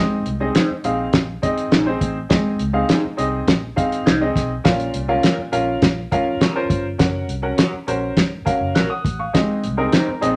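A cloth-damped drum kit sits up front from 0.3 s, its fat snare, tight kick and hi-hat sounding dry, dark and thuddy with a rolled-off top. This uplifting, warm slice of uptempo 1960s-style soul runs at 102 BPM in 4/4 with a straight feel, set in Ab mixolydian and cut from a longer piece. A clear, worn grand piano carries the accompaniment from the start, also up front, while a vintage muted fingered electric bass adds a round, punchy, foam-muted low end. An electric guitar through a small old amp plays bright, twangy, slightly broken-up picked stabs colored by a phaser, and at 9.9 s a second guitar through a similar amp slips in with a brief riff in the background. The harmony moves from Ab to Bbm, Gb and back to Ab, and a wet studio reverb surrounds the mix.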